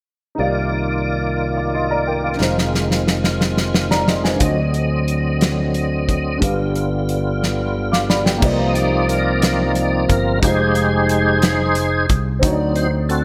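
The tonewheel organ stands out in this slow gospel piece in C minor. Its full, lightly overdriven tone turns through a slow rotary speaker with chorus vibrato, holding sustained chords up front from 0.4 seconds and taking a solo from 8.4 seconds to the close. Set in 6/8 at 60 beats per minute counted in dotted quarters, the mood is soulful and fervent, moving through chords such as Cm11, Fm7, D7b9 and G7. A baby grand piano with a natural, short-sustained sound and analog chorus plays accompaniment, while a picked electric bass adds a growly, direct low end. The acoustic drum kit arrives at 2.4 seconds with a fat snare, punchy kick, hi-hat and crash, sitting close in a small room with gated reverb and playing fills along the way. A moderate plate reverb and bright 1980s-style digital production give this cut from a longer piece a polished studio sheen.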